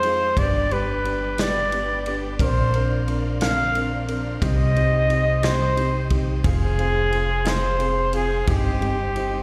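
A clear, vintage-toned flugelhorn carries the jazz-style solo melody with vibrato up front, its line touched by slapback echo and digital delay in this aching, dramatic six-eight pop ballad in C minor at 59 BPM. Beneath it, a dark, mellow baby grand piano with slapback echo and a woody pizzicato upright bass, also up front, move through G, Bbadd9, Cm and Fm. A very quiet fingerpicked steel-string acoustic guitar with finger squeak, a smooth tonewheel organ with chorus vibrato and key click sitting in the background, and a natural country drum kit with punchy kick, snare and ride fill out this short cut from a longer piece, heard as a live gig through the venue's PA with recital hall reverb.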